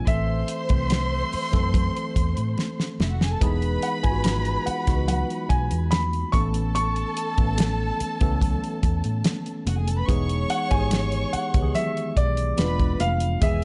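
The production is dark and warm, its highs topping out around 11.0 kHz in a studio ambience, giving this romantic, lush 1970s-style soul piece a plush glow. A concert grand piano carries the melody high in its range, touched with a slapback echo. Beneath it, a worn, slightly out-of-tune tine electric piano plays clean, direct accompaniment, while a dark, bowed violin section adds a smooth, vibrato-rich second line. Up front, a dry, acoustic drum kit brings a fat snare and a tight kick, with a fill from 2.6 to 3.4 seconds. A round, punchy, foam-muted fingered electric bass anchors the low end, and very quiet, high-tuned congas add a bright, close touch. The harmony moves from Am through Emaj7 and Aadd9 before settling on E7b9 near the end of this passage, which is cut from a longer piece.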